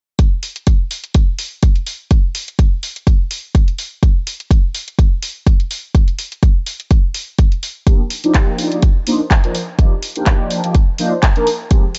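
Sensual and funky, this lightly swung filtered disco house excerpt opens on a punchy, up-front electronic kick and a house kit of handclaps and bright, sidechain-pumped hi-hats, until at 7.9 s a round, mellow synth brass of detuned sawtooths arrives on an Ebmaj7 chord, sustained with chorus, phaser, vibrato, a low-pass filter sweep and sidechain pumping, in a dry, gritty recording with a dark top end.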